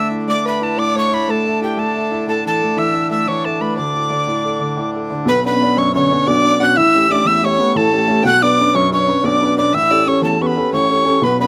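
A breathy, bright metal whistle with vibrato and chiff sits up front with slapback echo in this cheerful, lively Celtic folk piece at 120 BPM in 9/8, joined by a dark, woody fiddle second line with portamento and its own slapback echo, a clear, intimate upright piano with audible action noise, and a reedy, hollow accordion drone that holds until 5.3 s, when the music moves into B minor and an airy, soft-attacked alto flute takes up a second line in the background, the whole captured outdoors with a dry sound and little reverb.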